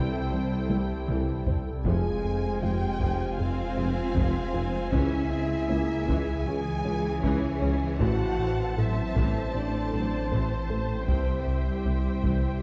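A cut from a longer cinematic score, this brooding, vast passage opens at once with a dense blend of orchestra and synths at 78 BPM in F harmonic minor, moving through C, F minor, D-flat minor and A minor before returning to C. Two violin sections carry the upper lines: a lush, distant symphonic section holds the melody while a focused studio section with a smooth top sings a second line beneath it, with a close viola section filling out the accompaniment in the background. Mellow French horns and a shimmering, retro pulse-width pad with chorus sustain the chords, while a soft, round, nasal pluck traces quiet arpeggios. The low end is heavy and layered: a menacing, evolving detuned saw bass with a saturated filter swell, a smooth synth bass riff, a very quiet tuba, a rich cello section, and a woody double bass section that enters at 0.3 seconds. A taiko ensemble struck with hard sticks arrives at 0.7 seconds with a fill that runs to 1.9 seconds, then continues in the background. 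A scoring-stage reverb with a 2.0-second tail gives the dark production a sense of space.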